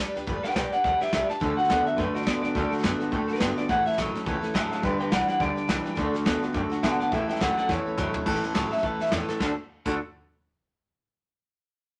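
A twangy, slightly broken-up electric guitar leads this upbeat, rowdy swung rockabilly cut from a longer piece, joined at 1.4 seconds by a second small-amp electric guitar playing a low riff. Beneath them, a bright, full-bodied steel-string acoustic guitar is picked in the background, while a woody, thumpy pizzicato upright bass sits low in the mix. A soft brush drum kit with punchy kick and bright cymbals, captured in a small room, drives things along and throws in a fill at 7.7 seconds, all under light reverb.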